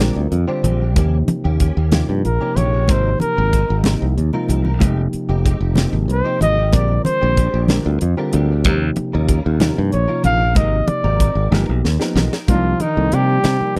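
Intense and nocturnal, this electric jazz fusion excerpt moves in a slow 6/8 with a straight feel, cut from a longer piece and captured in a dry, close 1970s-style studio sound. A gritty, overdriven reed electric piano sits in the background through a combo amp with spring reverb, while a clean, direct-recorded electric guitar adds compressed, picked stabs colored by ensemble chorus. Up front, a bright, growly fingered electric bass and a crisp fusion kit with a high-tuned snare and punchy kick drive the groove, with drum fills around 4.3 and 11.5 seconds, and damped, high-tuned congas tap softly behind them. From 2.3 seconds a trumpet in a bucket mute carries the solo melody, veiled and soft in attack with vibrato. The harmony cycles through rich extended chords such as Bb13, Eb9 and Ab69 before a G7alt turns toward Cm9 at 12.5 seconds, where a mellow bass clarinet enters in the background with scooped notes.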